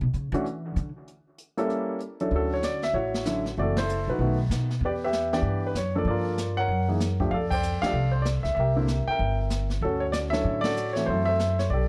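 A woody, pizzicato upright bass with steel strings opens this playful, relaxed jazz piano trio excerpt, featured up front in a short solo over the first 2.3 seconds. Brushed drums join almost at once, with dark cymbals, a medium-tuned snare and a boomy kick, while a warm grand piano with short sustain carries the melody up front, set in plate reverb. The swung four-beat feel moves briskly through rich harmony, with sus2 and ninth chords, a flat-nine dominant, and half-diminished turns such as F#m7b5 to B7 to Em7. The whole band hits accents together at 3.7, 7.5 and 10.6 seconds. A moderate studio room and a dark, warm production frame the trio.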